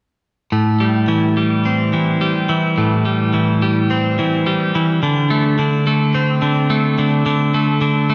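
A clean, bright twelve-string electric guitar rings out at 0.5 seconds, picking twangy, compressed arpeggios over Am7 before moving to D5 at 5.0 seconds, sitting up front with tape echo. This brief rock fragment in A minor moves at 107 BPM in a straight 4/4, its brooding yet cathartic mood carried by a dreamy mix soaked in a lush hall reverb. The guitar falls silent at 8.1 seconds.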